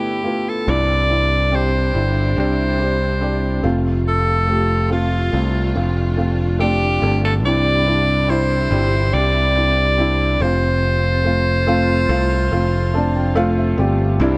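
A light reverb surrounds this short, tender cut from a longer pop ballad, moving in a straight, unhurried 4/4 with a heartfelt mood. An edgy, forceful alto saxophone carries the melody up front from the opening moment, its pop-style scooped notes sounding present and punchy until 13.8 seconds. Beneath it, a felt-muted upright piano offers soft, mellow, intimate accompaniment with audible action noise, closing with a felt piano fill from 12.5 to 14.2 seconds. A lush studio string section joins at 0.7 seconds with smooth, bowed sustained chords and vibrato, sitting in the background, while a bright, direct picked electric bass enters at the same moment and stays punchy in the foreground. The harmony opens on Gadd9 and settles into a gentle alternation between Cadd9 and F.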